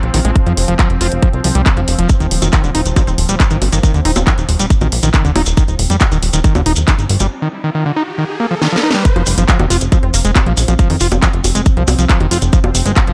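A screaming, squelchy acid line with distortion and delay drives this intense psychedelic trance excerpt over a tight, up-front kick, punchy analog bass, a garage kit with cracking snare, bongos and handclaps, grainy maracas from 2.1 seconds, a bubbling stepped-filter pad in the background and sparse juicy blip plucks, as a riser and drum fill lead into the drop at 9.1 seconds.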